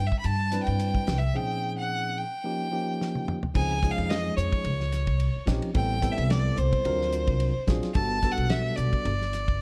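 A rich, smooth bowed violin with vibrato carries the melody up front through plate reverb in this bright, funky electric jazz fusion excerpt at 109 BPM with a light 16th-note swing, over a clean tine electric piano, a woody pizzicato upright bass with steel strings, and a damped 70s drum kit with a fat snare, tight kick and dark cymbals, all in a dark, warm production, with a break from 1.3 seconds capped by a drum fill at 3.0 seconds before the chords shift at 3.5 seconds.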